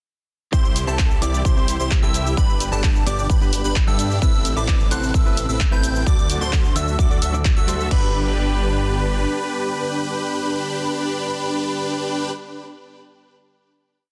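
Dry and densely limited, this euphoric, triumphant festival progressive house piece in G major runs at 130 BPM, opening straight into a drop that lasts until 7.9 seconds over a C, G, Amadd9, D progression before landing on a final G chord. A punchy big-room kit drives a four-on-the-floor kick with crash, programmed hats, shaker and handclaps, while a menacing, saturated detuned saw bass pumps beneath a huge, thick supersaw riff in dotted-rhythm chords. A bright plucky square-wave lead with phaser and delay doubles the chords an octave higher in arpeggios, a twangy clean electric guitar sits in the background with subtle chorus and delay, and a very quiet, warbling vintage pad sustains underneath until the close at 12.3 seconds.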